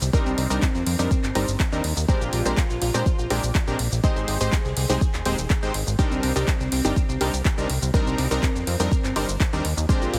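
A punchy, up-front electronic kick drives a straight 4/4 pulse at 123 BPM alongside a layered deep house kit of handclaps, hi-hat and shaker with a small-room character, in this expansive, bittersweet progressive house passage in C minor. A funky, sidechain-pumped analog bass of sawtooth and square waves sits beneath detuned supersaw stabs that pump and echo through delay, while a crystalline, detuned wavetable pluck spins bright arpeggios through chorus and delay. The harmony moves from Cm9 to Bb13 at 2.1 seconds, Abmaj7 at 4.0 and back to Cm9, wrapped in light digital reverb and a heavily compressed, radio-like sheen.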